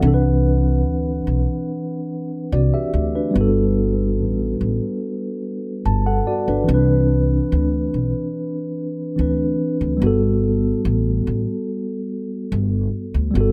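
A mellow tine electric piano and a woody, thumpy pizzicato upright bass sound together from the start of this smooth, romantic contemporary R&B passage, cut from a longer piece, as both sit up front in a small room with light reverb over a slow, straight 4/4 groove that moves between Cmaj9 and Gmaj9 every few seconds until 13.5 seconds.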